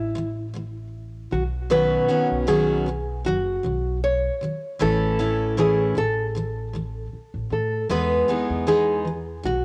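From the first moment, a fingerpicked nylon-string guitar carries the melody between E4 and C#5 while a picked steel-string acoustic guitar and a pizzicato upright bass play beneath it, all three together for the full 9.6 seconds of this cut from a longer piece. It is carefree, easy-going acoustic pop at 78 BPM in 4/4, with a gentle 55% swing on the sixteenths. The nylon-string guitar sounds small and boxy, with audible finger squeak, and sits up front. The jumbo steel-string guitar, also up front, is bright and full-bodied, with its own finger squeak, and supplies accompaniment from A2 to A4 over chords moving from A5 to Badd9, then A and finally Emaj7 at 7.9 seconds. Both guitars carry a cassette tape colour, while the woody, thumpy upright bass holds the dark low end from F#1 to A2. Light reverb and the feel of a home cassette recording give the whole an intimate, homespun character.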